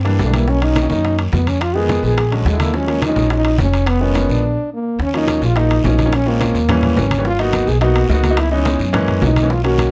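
A smooth-topped French horn carries a sultry, sophisticated melody over an intimate grand piano with audible action noise and a woody, up-front pizzicato upright bass in this fast Afro-Cuban jazz passage in Eb minor at 213 BPM, joined within a fraction of a second by very quiet ringing low-tuned congas, round hard-hand bongos, metal-shell timbales in the background and a raspy vintage guiro, all in a dark, lightly reverberant mix that halts briefly from 4.4 to 5.0 seconds before moving through rich minor-ninth and altered-dominant chords.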